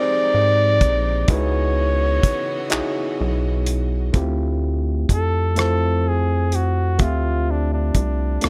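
Yearning and sultry, this slow six-eight R&B excerpt at 42 BPM sets a mellow, lightly vibrato flugelhorn up front with slapback echo over a gritty, overdriven reed electric piano, a clear bowed string section that holds chords until 4.1 seconds, a rubbery, hollow square bass entering at 0.3 seconds, and a dry, damped 70s drum kit of kick, hi-hat, rim click and handclaps arriving at 0.8 seconds, with the chords moving from Fm11 through Dbm11 to Dm11 as the flugelhorn takes a solo from 4.1 seconds in a close, nearly reverb-free sound.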